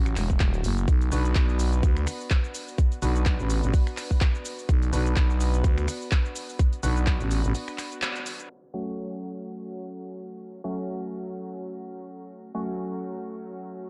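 A swung sixteenth-note groove in four drives this swaggering, aggressive bass house passage, cut from a longer piece. A layered, produced dance kit of finger snaps, handclaps, hi-hat and shaker opens the groove and is soon joined by a tight electronic kick sitting up front. Beneath them, a growling, thick FM bass with overdrive and sidechain pumping pushes hard, while a hollow, organ-like percussive stab with ring modulation, a noise layer, analog chorus and dub echo sits low in the mix, moving between two minor chords. The bass drops out at 7.5 seconds for a brief break marked by a band accent, and from 8.5 seconds the stab carries on alone under a filter sweep. The production is dark and dry, with a low-pass filter taming the top end.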